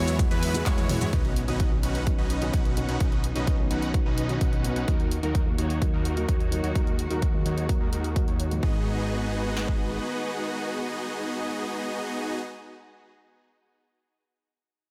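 Huge, bright supersaw chords carry the riff through this anthemic, euphoric festival progressive house excerpt at 128 BPM in G# minor, pumping against the sidechain with digital delay and a low-pass filter sweep that runs from 1.1 to 8.6 seconds. It opens on a drop, where a bold, detuned unison lead plays arpeggios before dropping out at 1.1 seconds, just after a band accent and a drum fill. A layered, electronic big-room kit drives the straight 4/4 with a punchy, up-front kick and snare, while handclaps, hi-hat, ride, shaker and toms sit lower in the mix until 8.6 seconds. A fat, thick analog sawtooth bass pumps underneath until 10.0 seconds, and a very quiet electronic impact lands at 1.1 seconds. In the background, a felt-muted upright piano adds soft, intimate accompaniment with delay, and a smooth, bowed studio string section holds vibrato chords, both within a digital ambience as the harmony moves from Eadd9 through Badd9 and D#m to a closing G#m7.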